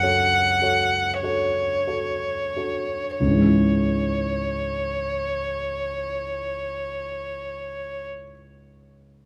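Romantic classical music for violin and grand piano, solemn and yearning in a slow, rubato 12/8 that slows down over the first 3.2 seconds, this brief fragment of a longer piece sets a rich, smooth violin melody with vibrato, bowed by one player up front yet with a distant quality, over a warm concert grand accompaniment of deep bass and short sustain, the violin falling silent at 8.1 seconds while the piano carries on to 9.3 seconds, all bathed in moderate concert hall reverb and caught by close, detailed microphones.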